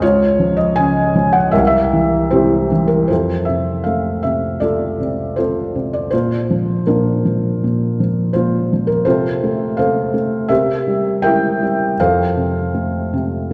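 A felt-muted upright piano carries this tender, calm classical fragment alone, its dark, intimate tone sitting up front with the thick felt and audible action noise close to the ear. The playing is lyrical and unhurried, with uneven, rubato timing in 4/4, and the harmony settles into a home chord at 3.1 s after an unsettled opening. A long, wet church reverb surrounds the piano, giving the close, soft sound a spacious hall around it until the passage is cut at 13.5 s.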